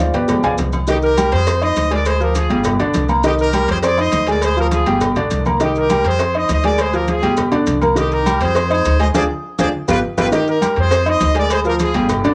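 Salsa at a brisk 203 BPM in C minor, passionate and danceable, this cut from a longer piece sets a woody, long-sustaining upright piano and a thumpy, gut-strung pizzicato upright bass up front, with a brilliant, punchy horn section carrying the melody from 0.9 seconds over a looping minor progression. Behind them sit thick-skinned congas, a round, saturated low cowbell, ringing metal-shelled agogo bells and timbales, and grainy maracas. Drum fills at 0.4 and 9.4 seconds and a band accent from 9.1 seconds mark the phrasing, while the piano and horns carry cassette tape colour and plate reverb within a small-room home recording.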